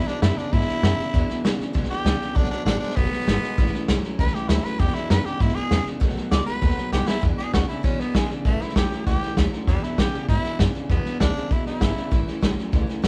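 Rowdy and retro, this rockabilly excerpt charges along at 197 BPM in a straight 4/4, centred on E mixolydian with a bluesy dominant-seventh progression moving among E7, B7 and A7. A raspy tenor saxophone takes the lead with a gritty, punchy solo full of vibrato through the first 7.2 seconds, then keeps carrying the melody until it drops out at 12.3 s. Beneath it, an electric guitar through a small old amp plays a twangy, slightly broken-up riff, while a picked steel-string acoustic guitar adds full-bodied picked support with the odd finger squeak from the background. A woody, thumpy upright bass played pizzicato on gut strings sits further back, and a muffled, lo-fi vintage drum kit with a tight kick and a rolled-off top sits up front, marking the turn into the second section with a fill just before 7.2 s. The band sounds like it was captured playing live together in one room, with a moderate studio reverb giving the whole take a lively, period feel.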